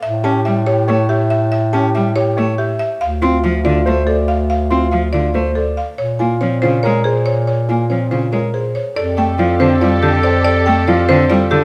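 This classical minimalist pattern piece, cut from a longer work, moves in a bright, propulsive 7/8 at 282 BPM counted in eighths, with a straight feel and tuning at A4 = 441 Hz. A buzzing marimba carries the melody with medium hard mallets on hardwood bars, its tone woody, dry and airy, while a warm, up-front bass clarinet holds the low line from the first moment. From 0.2 seconds a bowed solo cello adds smooth, vibrato-rich accompaniment, and a dark, mellow baby grand piano ripples through arpeggios. The harmony passes from A to Dm to Bbm7, and at 9.0 seconds it settles on Fadd9 as the music shifts into a new section. There a clear, soft-attack clarinet with a vintage classical colour enters on a second line, and a lush studio string section sustains chords in the background. The sound is close and detailed, with light reverb.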